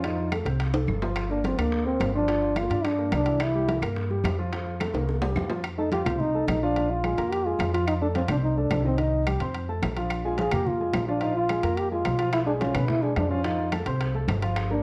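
Sunny and danceable, this brisk Afro-Cuban jazz excerpt at 215 BPM in F mixolydian features a mellow, up-front trombone solo with soft attack, vibrato and scooped notes in plate reverb. Beneath it sit an intimate grand piano with audible action noise and a growly pizzicato upright bass. Ringing, close timbales, bright damped congas and woody claves drive the percussion, and distant high-tuned bongos play until 5.6 seconds and return at 12.3 seconds, with a couple of drum fills along the way, all under light reverb and a worn, warbling cassette-tape pitch drift.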